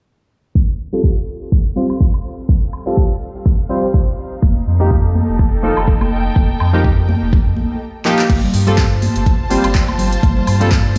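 An up-front, layered electronic kick drives this hypnotic deep house excerpt at 124 BPM in G minor, alongside a lush, bowed studio string section fading in from 0.6 seconds with sidechain pumping, and a glossy, detuned chorused polysynth entering at 0.9 seconds to play tape-echoed stabs under a filter sweep, while a deep house kit of smooth hats, handclaps, crash and woodblock, a sine-and-triangle sub bass with octave, vintage band-limited congas entering at 4.4 seconds, and a silky string machine in the background fill out a sound wrapped in stone-room reverb and a low-pass filter, with a drum fill at 8.1 seconds.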